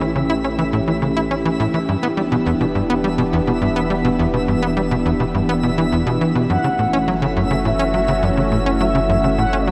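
A tight, punchy sequencer bass drives this ambient space-music excerpt, its nasal sawtooth and square-wave riff plucked through a filter and colored by cassette-tape grit and delay. It shares the front with a sweeping resonant pad of detuned sawtooths that hold full-bodied, bright chords, shimmering with chorus and tremolo. Beneath them a round sine sub bass fades in, deep and steady, while a twinkling granular texture sparkles above with an octave-up FM shimmer and its own reverb. At 6.5 seconds a smooth, expressive synth lead enters with a mellow, vibrato-touched melody carried on chorus and delay. In E dorian at 104 BPM in a straight 4/4, the harmony moves from A7 to Em7 at 1.9 seconds and on to F#m7, all bathed in a huge, wet ambient reverb that gives the piece a mysterious, cosmic feel.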